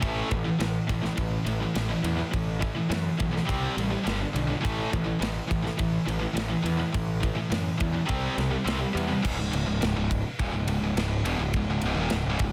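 A growly, punchy fuzz-overdriven bass sits up front in this epic, aggressive heavy metal excerpt at 104 BPM in C# minor, driving power chords on A5, C5 and G5 with a close, mid-forward acoustic kit of crash, ride, snare and a clipped kick, while two bright, distorted picked guitars play riffs in the background until one drops out at 9.2 s as the harmony shifts to C#5 under a light reverb and a dense, heavily limited modern master.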